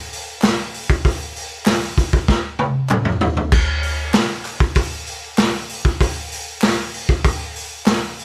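A raw garage drum kit sits up front in this rowdy, swaggering rock excerpt, its gritty, saturated tone coming from a small room with a mid-forward balance and a rolled-off top. Crash cymbal, hi-hat, punchy kick, medium-tuned snare and toms carry a straight 4/4 groove from 0.1 seconds to the end. A group handclap joins at 0.4 seconds, hollow and human, sitting far back in the mix. A drum fill between 2.3 and 3.5 seconds breaks up the beat before the kit settles back into its stride. Light reverb gives the short cut a loose, garage-room swagger.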